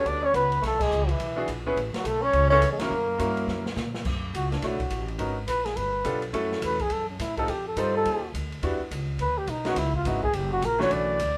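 Cool and smoky, this short cut from a longer small-group swing and bop performance moves at a brisk 210 BPM in B minor with a swung 4/4 feel. A breathy, mellow flugelhorn carries the melody up front with light vibrato, joined at first by a whispered, intimate tenor saxophone on a second line that drops out at 3.8 seconds. A brilliant, polished upright piano supplies accompaniment with long sustain, while a woody pizzicato upright bass on steel strings anchors the low end. The drum kit sounds dark and smooth in a small room, with dark cymbals and a boomy kick, and the band hits accents together before a drum fill leads into the flugelhorn's solo at 4.0 seconds. Over a moderate studio reverb, the solo rides a richly colored progression of extended minor and dominant chords through to the cut at 11.4 seconds.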